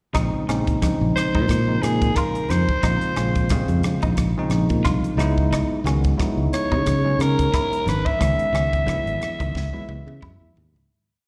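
Heard as a live gig through the venue's PA with recital hall reverb, this intense, nocturnal electric jazz fusion piece moves at 89 BPM in a swung 4/4 over Bbm11 and then Dbm11: a crisp drum kit with a high-tuned snare and punchy kick drives a samba groove, very quiet ringing congas add a pattern, fingered electric bass carries a syncopated riff, bell-like tine electric piano plays bright rootless chord stabs, and a compressed, clean electric guitar with lush chorus and slapback echo repeats a background ostinato, while a growling, raspy soprano saxophone enters at 1.2 seconds up front with a motif-based jazz solo under tape and slapback echo, before a fade-out from 8.2 seconds and a drum fill at 9.6 seconds.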